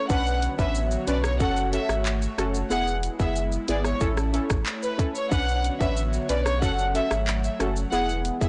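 Dancehall with a bouncy, summery feel, this short cut from a longer piece pairs a smooth, close bowed violin section carrying the melody with delay, and punchy, brassy synth stabs with chorus cycling through Bmadd9, F#m, E and A. Beneath them, a round sine sub bass sits up front alongside a tight, electronic island-pop kit of kick, hi-hat, rim click, handclaps and shaker, with soft clipping on the snare, while an airy, breathy, warbling pad holds sustained chords with chorus and sidechain pumping. The dry mix sounds blown-out and overdriven, with its top end dulled.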